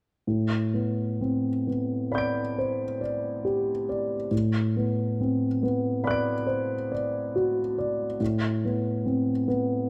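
Closely miked with light reverb and the intimate, natural sound of a concert grand up front, complete with audible action noise and deep bass, this hazy, nocturnal excerpt of impressionist solo piano drifts in a rubato 9/8, moving through Am11, Bm7/A and Amadd9 across a range from A2 to D7.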